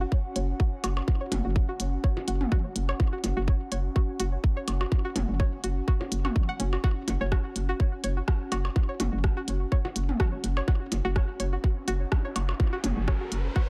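Minimal techno with a hypnotic, quirky mood, built on a tight, up-front electronic kick and a hollow, knocking FM bass that pumps under the sidechain, while a twangy, string-like resonator pluck plays a bright chorused riff through analog delay over an airy, breathy pad, with clicky hi-hats, rim clicks and tape-warm percussion blips and toms repeating in tape echo across a dry, echo-heavy mix, and a background riser entering at 11.3 seconds in this cut from a longer piece.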